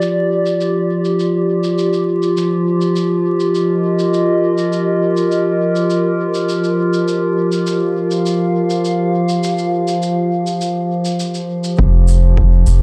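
A dark, lightly reverberant production with vinyl crackle frames this hazy, deep ambient dub excerpt at 102 BPM, where a warbling, detuned lo-fi pad with chorus and 12-bit sampler grit holds sustained chords moving from Fm to Ebadd9/F over an overdriven shaker re-recorded in a large room, until at 11.8 s a round, soft dub sub bass arrives up front alongside a layered electronic kick that sits in the background.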